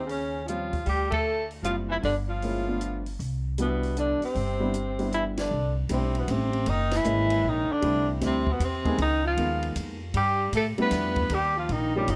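A dark, warmly produced slice of relaxed small-group swing in 3/4 at 155 BPM features a breathy tenor saxophone with scooped notes and plate reverb carrying the melody up front, a vintage baritone saxophone with vibrato on the second line, a woody, thumpy pizzicato upright bass, a dry cocktail drum kit with dark cymbals and a punchy kick, and an intimate baby grand piano with audible action noise, with band accents at 1.1, 5.3 and 6.9 seconds.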